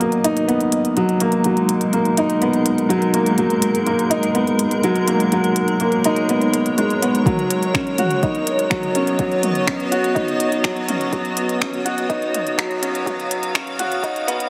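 Intimate and hypnotic, this piano and strings electronica excerpt at 124 BPM in G# dorian rests on a single G#m9 chord, with a clear, woody upright piano riff up front through delay, a blurred, granular cloud pad pumping in sustained chords, a barely audible round sine sub bass, and a crisp, overdriven organic electronic kit of finger snaps, hi-hat and toms, all building under a filter sweep until a deep, layered electronic kick joins at 7.3 s, bathed in a huge ambient reverb.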